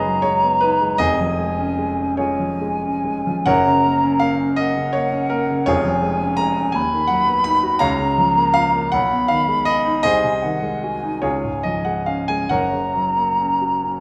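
A silver concert flute and a baby grand piano begin together, opening a serene, lyrical romantic duo in F# major that is cut from a longer piece. The flute carries the melody with a mellow, hollow, pure tone, a crisp attack and vibrato, set somewhat distant in the sound. The piano supplies a polished, present accompaniment from up front, reaching from deep bass notes into the flute's register. The slow 6/8 pulse, around 45 to 56 dotted-quarter beats per minute, moves with a free, rubato feel. The harmony moves through gently shifting chords and resolves through a dominant C# back home to F# at 12.5 seconds. The duo sounds in a reverberant recital hall that gives the lines a soft, lingering bloom.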